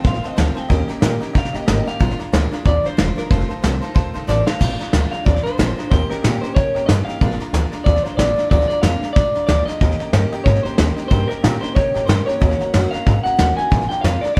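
The excerpt opens with the whole band at once: a rowdy, retro rockabilly number swinging at 184 BPM in Bb mixolydian, where a twangy, slightly broken-up electric guitar through a small old amp carries the melody over the dark, woody thump of a pizzicato upright bass on gut strings. A bright dreadnought acoustic guitar with fresh strings and audible finger squeak fills out the accompaniment, while a jangly, metallic tack piano sits high in the background and a soft brush kit, up front with dark cymbals and a tight kick, drives the swing. A short drum fill at 4.3 seconds turns the band back into the chord cycle, which later darkens to Ebm7 at 12.4 seconds, and the whole take has the feel of a live band in a moderate stone room.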